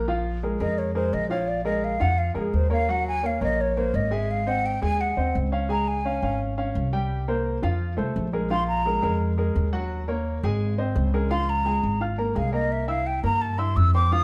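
A breathy, hollow jazz flute carries the melody up front, its straight tone and soft attack taking a solo that runs through this short excerpt, cut from a longer piece, pausing around 9.2 seconds before returning at 11.3 seconds. The mood is fiery yet sophisticated: a brisk, straight-feel jazz tune in 4/4 at 171 BPM, set in Bb minor. A baby grand piano with a natural, up-front sound supplies the accompaniment throughout, moving through changes such as Ebm7, Ab7, Db and C7. Beneath it, a plucked upright bass with steel strings gives a woody, thumpy, dark low end. The band sounds as if it is playing live together in a moderate stone room, whose reverb adds a clear sense of space around the players.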